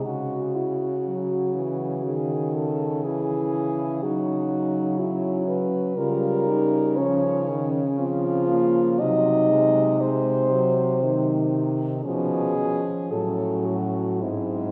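A warm French horn carries the melody up front in this brief classical excerpt for horn quartet, singing a yearning, elegiac line in a lyrical 3/4 with uneven, rubato beats. Beneath it, a mellow horn with a smooth top shapes the second line, while another horn, punchy and touched with light vibrato, supplies the accompaniment. A clear-toned horn, also with light vibrato, anchors the bass. All four horns play together from 0.0 to 14.7 seconds, moving through a minor-key harmony that darkens with seventh chords before settling on a minor chord near the close. The ensemble sits further back in a concert hall, wrapped in a long, wet reverb that lends the lament a spacious, solemn glow.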